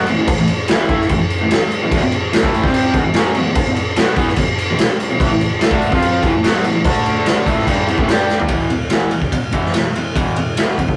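A bright, overdriven electric guitar opens at 0.0 s with a picked, double-tracked riff in E minor, joined at 0.1 s by an acoustic drum kit of kick, snare, toms, ride and crash. This is a raw, swaggering garage rock cut from a longer piece, moving at 146 BPM in a straight 4/4. The guitar's power chords shift from A5 to E5, D5 and G5, and it sits up front alongside the drums. The kit sounds gritty and saturated, with a punchy kick, a medium-tuned snare and a rolled-off top, while a very quiet, jingly tambourine adds shimmer in the background. A drum fill at 8.3 s leads into a closing passage on E5, all captured in a rough rehearsal-room recording with light reverb and warm saturation.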